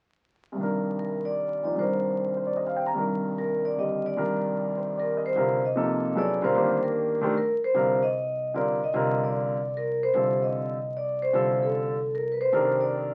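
Heard through the crackle of a very old 78 rpm record, this short excerpt of modal jazz sits in a small, wet-sounding room and carries a hypnotic, cool mood. A natural, up-front grand piano opens the accompaniment at 0.5 seconds, spread from deep bass notes to high treble. At 1.0 seconds a vibraphone takes the melody, played with medium mallets and the motor off, its metallic, ringing tone sounding close and boxy in a narrow upper range. The harmony rests on a Cm9 chord before moving to Dm/C near the close, all in a swung 3/4 lilt. From 5.4 seconds an upright bass joins underneath, quieter than the others, its pizzicato gut strings giving a woody, thumpy, warm sound in a low register.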